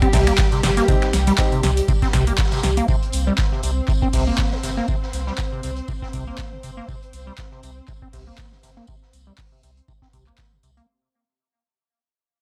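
Driving and trippy, this acid house excerpt runs at 120 BPM in 4/4 with a 55% swing on the sixteenths, sitting on a C5 chord and fading out across its full 10.9 seconds. A squelchy, resonant square-wave acid bass carries the riff, run through phaser, tube saturation, 12-bit sampler grit and dub echo, with a filter sweep moving across the whole length and sidechain pumping. Beneath it, a thick triangle sub bass holds the low end, saturated and pumping, while a deep, up-front electronic kick anchors the groove. An analog drum machine with a punchy snare, metallic hats, finger snaps and handclaps, re-recorded in a small room, mixes with a gritty, mid-forward breakbeat kit of hi-hat, snare and tambourine, its top rolled off and high-pass filtering applied to its hats, snare, percussion and room. A lush, woody string section with vibrato sustains chords with sidechain pumping, and a clear, vintage grand piano lands brief stabs with dub echo between 0.9 and 1.5 seconds, all set in light reverb.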